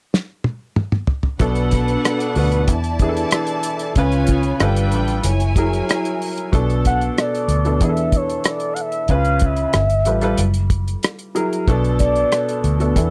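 A straight 4/4 groove opens with a cloth-damped, thuddy drum fill before a muted, round fingered bass and a worn grand piano join at 1.4 seconds, a lush bowed string section briefly adds a smooth second line, and from 6.9 seconds an expressive, warbling portamento lead with chorus sings over the minor-seventh and suspended changes in this bittersweet, cinematic slice of dry, close 1970s-style soul.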